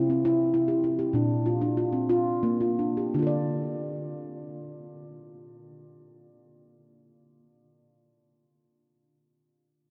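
A lone handpan opens with ringing fingertip arpeggios of nitrided steel, set up front with a boxy small-room character, gently slowing over the first 3.1 seconds as the harmony moves from C to Bb. At 3.1 seconds it settles onto D minor for a hypnotic, meditative passage in a slow 6/8 of roughly 54-70 BPM, tuned slightly sharp to A4 = 445 Hz. A vast cathedral reverb and the worn, warbling pitch drift of old cassette tape give this short cut from a longer piece a hazy, dreamlike glow.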